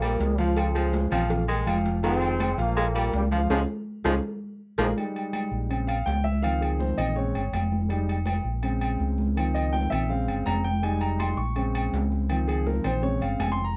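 Salsa at 164 BPM with a fiery, driving feel, cut from a longer piece: a mellow, punchy trombone section carries the melody over a smooth-topped baritone saxophone line until a drum fill and band accent at 3.5 seconds hand off to a vintage, long-sustaining baby grand piano solo from 5.0 seconds, all over a dark, round fingered electric bass up front, ringing high-tuned congas, metal-shelled agogo bells and timbales, and a tight cowbell in the background, in a dry, close 1970s-style studio sound.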